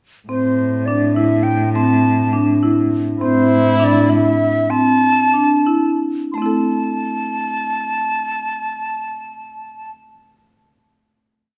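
A dark, percussive marimba begins this short contemporary chamber piece in 5/8 together with flute and cello, its medium hard mallets sounding up front as it repeats a hypnotic, urgent ostinato of arpeggios. Above it, a close-miked wooden flute sings airy, tongued arch-shaped phrases with vibrato, while a distant bowed cello holds sustained bass notes until 4.7 seconds. A nasal, muted French horn enters at 3.2 seconds with a long guide-tone line as the music slows, before flute and marimba settle at 6.3 seconds onto a final chord that rings in a reverberant recital hall.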